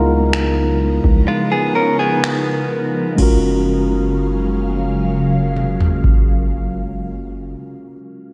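A slow, straight 4/4 pulse comes from a booming analog drum machine. Its deep, overdriven kick, toms, finger snaps and crash cymbal carry a gritty 12-bit sampler edge and the sound of a large room, though the kick drops out from 1.3 to 3.2 seconds. Cut from a longer contemporary R&B piece, the music feels smooth and romantic, moving from a C#13 chord to F#maj9 at 3.2 seconds. A mellow tine electric piano sits up front playing accompaniment, while an ethereal, airy pad holds sustained chords shaped by ensemble chorus, phaser and its own reverb. Beneath them, a long 808-style bass hums low and sine-like, each note striking fast and then decaying. Up front, a direct-recorded clean electric guitar briefly plays picked, compressed arpeggios through spring reverb and delay. A moderate plate reverb soaks the whole mix in a dreamy haze.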